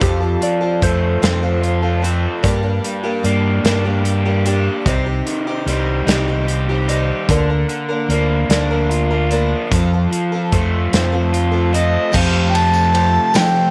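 Dusty and wistful, this short cut from a longer folk rock and heartland rock piece moves at a slow 50 BPM in 6/8, with a shimmering, octave-doubled twelve-string acoustic guitar and a double-tracked, overdriven garage guitar riff over a round, punchy fingered bass and an airy, polished country drum kit. A dark, clean lap steel with fingerpicked slide adds a brief second line in the opening 2.0 seconds, while the chords move from F through Gm, Cm and Bb/D back to F. At 11.7 seconds a gritty, amplified harmonica takes the melody with vibrato and tongue slaps, and a jingly tambourine joins in the background as the harmony settles on Fadd9, all within a studio reverb.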